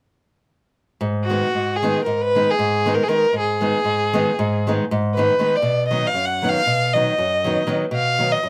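In free time, this fiery, virtuosic Balkan folk excerpt in Ab minor, tuned to A4 = 441 Hz, opens at 1.0 seconds with a bright, small-bodied fingerpicked nylon-string guitar accompaniment, joined at 1.2 seconds by a single rich, smooth, bowed violin melody with even vibrato, both up front and captured with close, detailed microphones in a moderate studio ambience as the harmony moves from Abm to B at 5.6 seconds.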